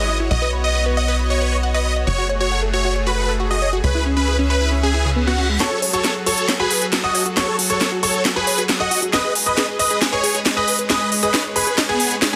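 Uplifting trance with an emotional, driving feel, cut from a longer piece, where a huge, euphoric supersaw lead with phaser and digital delay carries the melody over a lush supersaw pad and a bright, detuned unison pluck whose arpeggios move through a filter sweep. A tight, punchy sequencer bass drives the opening until a reverse cymbal at 5.0 seconds leads into a build-up at 5.6 seconds, where the bass drops out and a clear concert grand piano adds a smooth second line. An up-front house drum kit with a cracking snare and crisp hats plays a fill through the build, all within light reverb and a dense, heavily limited modern master.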